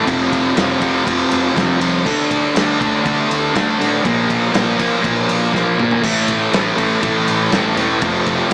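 A thick, bright fuzz guitar, double-tracked and up front, drives a brooding, dark quiet-loud alternative rock riff over power chords, alongside a woody pizzicato upright bass in the background and a loose, up-front indie drum kit with a tight kick, medium-tuned snare and pumping small-room ambience, its drum fill at 5.5 seconds leading into the riff's return at 6.0 seconds, all heard through light reverb and a small-speaker sound in this cut from a longer piece.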